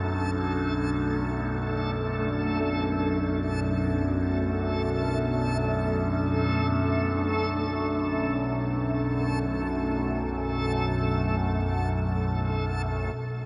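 Dark ambient drone in free time, its mood dark and cavernous, heard as a short section cut from a longer piece, tuned slightly low to A4 = 438 Hz. Up front sits an overtone-sweeping drone in the low register, a resonant, wave-folded blend of sawtooth and sine whose moving overtones sweep through chorus and phaser, with slow attacks and long releases. Above and around it, a deep, moody pad holds sustained chords, its detuned unison sawtooth voices thickened by a sine sub octave and softened by chorus and shimmer reverb. Quieter still, a reversed, swelling texture of detuned triangle tones adds a dreamy, granular haze in the middle register, also bathed in shimmer reverb. All three parts sound together from 0.0 s to 13.5 s over a single Dadd9/B chord, set in a huge, wet reverberant space with a decay of 8.2 seconds.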